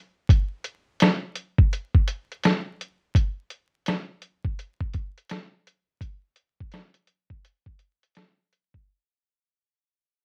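Vinyl crackle and a cassette recording color this homemade-sounding clip, set in a moderate studio reverb and fading out across its full length. It is a reflective, melancholic hip hop groove at 84 BPM in 4/4, with a 63% swing on the sixteenths. Up front sits a lo-fi sampler-style drum kit, entering at 0.3 seconds. Its hi-hat, thumpy kick and medium-tuned snare sound compressed, pitched down and muffled, roughened by vintage 12-bit grit and cassette tape.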